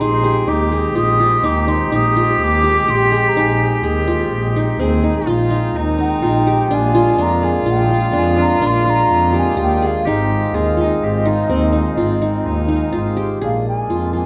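Restless yet hopeful, this contemporary chamber piece in 7/4 at 125 BPM sets a breathy, mellow concert flute melody with vibrato over a nasal, gut-string cello second line that stops at 13.2 seconds, reedy hand-pumped harmonium chords, bright fingerpicked triple-string qanun arpeggios and a smooth bowed double bass, in a moderate recital hall reverb.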